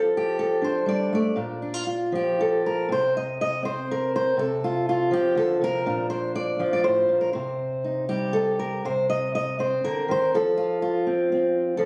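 In a loose, rubato three-beat lilt, a lone fingerpicked steel-string acoustic guitar carries this short, wistful folk passage, cut from a longer piece and lasting about 12 seconds. The warm, up-front guitar ranges from low bass notes to bright upper strings as it moves through Bb, F/C and Cm before settling on Cm7 and F, with the opening idea returning at 8.8 seconds. A light reverb surrounds the intimate, room-captured sound, giving the reflective playing a soft glow.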